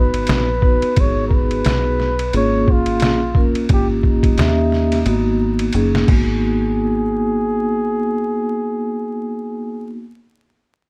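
Hip hop in a nocturnal, cool jazz-hop vein, with a lightly swung groove and a dark production dusted with vinyl crackle and light reverb. A breathy, jazz-style flugelhorn carries the solo melody over up-front vibraphone chords played with soft mallets, ringing and mellow with a slow motor vibrato, while a deep, round, foam-muted fingered electric bass sits underneath. A gritty, pitched-down, compressed sampler-style drum kit with a thumpy kick drives the opening, moves into a fill at 5.1 seconds and drops out at 6.3 seconds, leaving horn, vibraphone and bass to carry the closing section.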